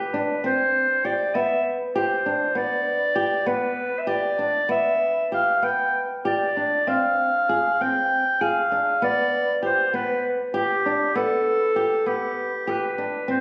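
Contemporary chamber music in an uneven 7/8 meter, playful and hopeful, cut from a longer piece. A warm, classical-style clarinet carries the melody, roomy yet up front, over a dark flamenco guitar with fresh strings whose fingerpicked arpeggios bring audible finger squeak, both playing throughout the 13.4 seconds. The sound is bathed in moderate concert hall reverb and has the compressed, club-reverb character of a phone recording made in the room.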